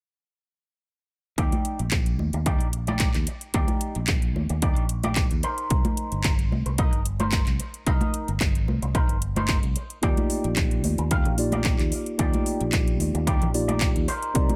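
Feel-good and groovy, this nu-disco excerpt moves at 111 BPM in 4/4 with a light swing on the sixteenths, sitting in Eb major and moving from Ebmaj7 to Cm7 and back again. From 1.4 seconds a punchy, overdriven electronic kick anchors the groove alongside a layered house kit of handclaps and metallic hi-hats, also overdriven and given the air of a large room, while ringing acoustic congas join at 1.5 seconds, close and dry in the background. A fingered electric bass supplies a warm, direct low end, and a bright, twangy electric guitar played through an envelope filter picks out a clean, compressed, scooped riff touched with subtle chorus and digital delay. At 10.0 seconds a mellow, reedy electric piano enters with accompaniment that pumps under sidechain compression and carries its own digital delay. The overall mix stays dry, with little reverb.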